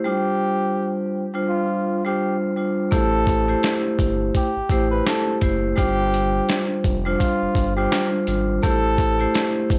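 A dark, ringing vibraphone struck with medium hard mallets opens this moody boom-bap hip-hop excerpt in A minor at 84 BPM, joined almost at once by a veiled, bucket-muted trumpet carrying a close-miked jazz melody with vibrato and a touch of tape echo over G7sus4 and Am7 chords. At 2.9 seconds a round, deep analog bass with transformer saturation and a dusty, compressed sampler-style kit enter together, the kit bringing a thumpy kick, a medium-tuned snare and hi-hat with a swung 16th-note feel. The dry, gritty hardware sound keeps the vibraphone and drums up front and the mood dark until the cut at 9.8 seconds.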